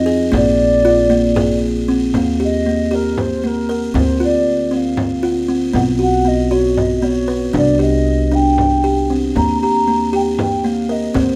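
A mellow, hollow baroque flute carries the melody with vibrato from the first moment, over a dark, growly pizzicato upright bass, in this hopeful, shimmering contemporary chamber piece in 7/8 at 232 BPM (eighths), in Eb major. From 0.1 seconds a buzzing, woody kalimba, close and up front, rings out arpeggios while a dry frame drum struck with hard hands keeps the percussion. The flute sits distant in a light reverb, and after a brief opening the music moves into a longer second passage at 2.1 seconds, with its harmony moving through Dm7 and Cmadd9 before returning to Eb, cut from a longer piece.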